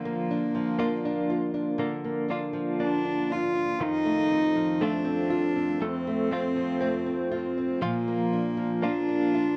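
Acoustic folk-pop ballad at 60 BPM in 4/4, intimate and nostalgic, cut from a longer piece and moving through Bb/D, F7 and Bb. A single bowed cello carries the melody up front with a dark, floating, pure tone and soft attack, over a small, fingerpicked nylon-string guitar, while a clean, compressed, direct-recorded electric guitar picks warm arpeggios through tremolo. Light reverb and a worn, warbling cassette-tape pitch drift give the whole a worn, old-tape character.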